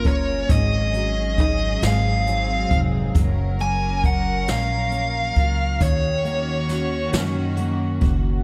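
A smooth, overdriven electric lead guitar sits up front, carrying the melody in picked notes trailed by tape echo until it drops out at 7.1 seconds. This is a tender, romantic pop ballad in a slow 6/8, moving at 45 beats per minute counted in dotted quarters with a straight feel. Beneath it, a dark, full-bodied jumbo acoustic guitar is picked and double-tracked, while a distant studio string section holds bowed chords played sul tasto, pure and floating with a soft attack. A woody, thumpy pizzicato upright bass anchors the low end, and a natural-sounding brush kit with a medium-tuned snare, boomy kick and hi-hat plays in a studio room until 8.2 seconds. The harmony moves from Ab7sus4 to Ab7, settles on Gbmaj7 and turns to Ebm7, wrapped in light reverb in this short passage cut from a longer piece.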